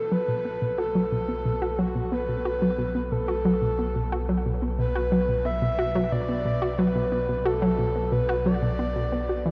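Hypnotic and expansive, this slice of ambient, sequencer-driven space music unfolds in a steady, straight 4/4 over a single sustained harmony. An up-front analog pluck riff enters almost at once, its round, detuned sawtooth tone snapping with a fast attack and quickly decaying, thickened by chorus and trailed by analog delay. Floating above it, a breathy, flute-like synth lead carries the melody from the very start, soft-edged and sustained, with gentle vibrato, a hint of noise in its breath and a sub-octave beneath, also dressed in chorus and analog delay. At 0.8 seconds a dark, evolving analog drone slides in low with a slow attack, its pulse-width-modulated sawtooth and pulse waves holding a deep bass note under a long release. The whole piece sits in a huge, wet ambient reverb with a 6.9-second tail, and a worn cassette-tape warble lends everything a drifting, unsteady pitch.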